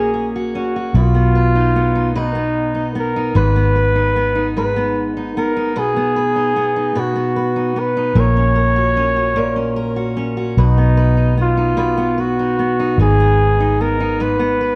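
Swaying in 6/8 at 50 dotted-quarter beats per minute with a straight feel, this tender pop passage is tuned to A4 = 438 Hz and cut from a longer piece. A punchy, smooth-topped flugelhorn sings the solo melody with light vibrato over a full-bodied fingerpicked dreadnought acoustic guitar and a dark, round, foam-muted vintage electric bass. All three parts sit up front in a small room with light reverb, moving from F#add9/A# through B, G#m and F#/A#.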